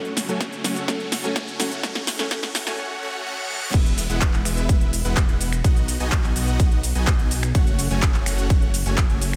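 A punchy, up-front electronic kick drives this euphoric, uplifting festival progressive house excerpt at 126 BPM in E major, where a fingerpicked steel-string acoustic guitar with finger squeak and a lush, phaser-tinged unison pad play through the build-up until 2.8 seconds, alongside huge detuned supersaw chords with tape echo, a big-room kit with crisp hats, and a background riser and reverse cymbal, before the drop at 3.7 seconds brings in a thick, chorused detuned saw bass under the sidechain-pumping supersaws.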